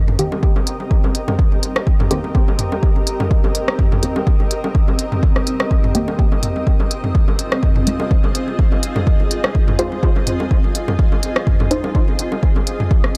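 Meditative and hazy, this dub techno excerpt rides a punchy, up-front electronic kick and a deep house kit of smooth hats and rim clicks with dub echo, while overdriven electronic toms and bongos, a muted sawtooth dub chord stab under a filter sweep with phaser and 12-bit grit, and a blurred, evolving granular cloud pad all pump to the sidechain over Cm7 moving to Fm7 at 6.7 seconds in a dry, gritty hardware sound.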